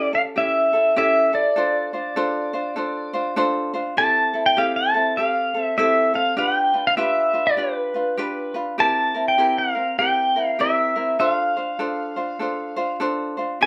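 A clean, electric pedal steel guitar carries the melody up front in this languid, sunny Hawaiian piece, played with fingerpicks and slide, its compressed tone bathed in plate reverb and shaped by volume swells. A light, fingerpicked acoustic ukulele accompanies throughout, also up front with plate reverb, as the swung 100 BPM groove moves from D minor into F major at 4.0 seconds through chords such as Fmaj9, G7 and C7 before settling on F6. The rough home-demo mix sits in a small, wet room, and the short passage is cut from a longer piece.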